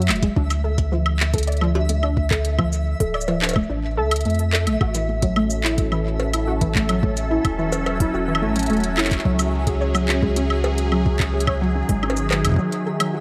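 A straight 4/4 pulse at 108 BPM drives this eerie, cerebral IDM excerpt, with an overdriven soft electronic kick and a produced kit of cowbell, handclaps, smooth hi-hat, shaker and woodblock, both set in studio reverb and the kit also carrying delay. A warbling, lo-fi square-and-saw pluck spins arpeggios through ensemble chorus and delay over a deep, round sine sub bass, while a bright granular texture sparkles high above on a sustained E5 across chords of Dm, A6 and C#sus4. At 5.2 seconds a swirling, detuned sawtooth pad with phaser and chorus enters, and a short break arrives at 12.6 seconds, in a recording tuned to A4 = 435 Hz.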